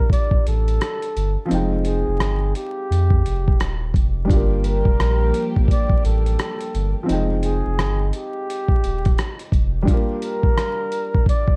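A swung 86 BPM lo-fi hip hop groove in G phrygian opens this hazy, nostalgic excerpt, with a gritty, compressed sampler-style drum kit of thumpy kick, hi-hat and rim click sitting up front beside a deep sine-like sub bass, while a felt-muted upright piano with cassette-tape character comps under a breathy flugelhorn melody bathed in plate reverb, and soft sul tasto strings float in only from 4.3 to 7.1 seconds, all framed by a dark, crackling vinyl production.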